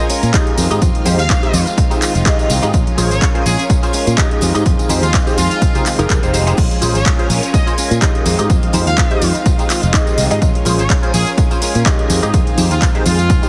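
Funky and groovy, this filtered disco house excerpt pairs a brilliant, tight trumpet section melody touched with light vibrato with a detuned sawtooth polysynth comp under chorus and phaser, a swirling vintage string machine in the background, a clean direct-recorded guitar riff, and a growly fingered bass, all pumping with sidechain compression over a punchy, up-front electronic kick, while a tape-warm house kit with handclaps, hi-hat and crash and very quiet ringing tambourine and congas fill out the heavily compressed radio sound.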